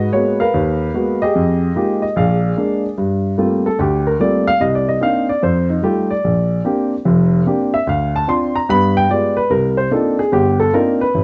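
A baby grand piano carries this short solo jazz fragment, its intimate, natural tone placed up front with the noise of its action audible beneath the notes, ranging from F1 to C6. The late-night, smoky mood rides a swung feel and rich extended chords, moving through Abm9 and Fm11 before the piano's solo section begins at 3.0 seconds over Gm11, Cm9, Bb69 and G7b9, arriving on Cm11. Light reverb and a dark, warm production give the recording a close, dim atmosphere.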